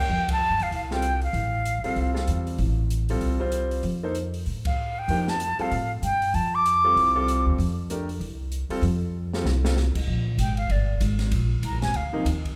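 A mellow, airy silver concert flute carries the melody up front in phrases with vibrato and a soft attack, over pizzicato upright bass with a woody tone, clear intimate baby grand piano with audible action noise, and an open jazz drum kit with a high-tuned snare and boomy kick, in a spiritual, hypnotic modal jazz excerpt with a swing feel, band accents at 0.3 and 4.6 seconds, a drum fill ending at 9.8 seconds, and a flute solo from 10.1 seconds, all set in a moderate recital hall reverb.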